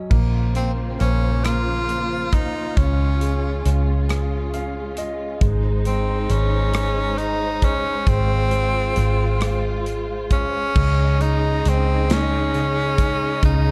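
The recording has a dark, warm production with little reverb, giving this tender, romantic six-eight pop ballad an intimate, unadorned feel in a fragment cut from a longer piece. A bright tenor saxophone carries the melody up front from 0.6 seconds, its jazz-style phrasing marked by vibrato, scooped notes and a tape echo. Beneath it, a concert grand piano supplies the accompaniment with deep bass, long sustain and audible action noise, adding a brief fill between 4.1 and 5.4 seconds. A vintage fingered electric bass, foam-muted, round and punchy, sits prominently in the mix, while a distant, lush string section holds bowed sustained chords with a soft attack. An acoustic drum kit in a small room keeps time with a tight kick, medium-tuned snare, rim clicks, hi-hat and crash cymbal as the harmony moves from Bbmadd9 through Db and Ab to a Dbsus2 at 10.8 seconds.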